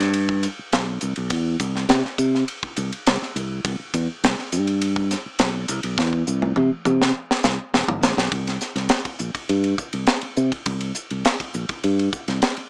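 A small-speaker sound with light reverb frames this brief, slick and bright stretch of electric jazz fusion in a straight 4/4, cut from a longer piece. A modern fingered electric bass sits up front, its tone growly and direct as it ranges from E1 to C3. Beside it, a crisp acoustic drum kit in an airy studio room brings polished, bright cymbals, a high-tuned snare, a punchy kick, hi-hat, ride and toms. The drums break into a fill from 6.0 to 8.3 seconds, leading the music into a new section at 8.3 seconds. Both parts play together from the opening moment until the cut near 12.7 seconds.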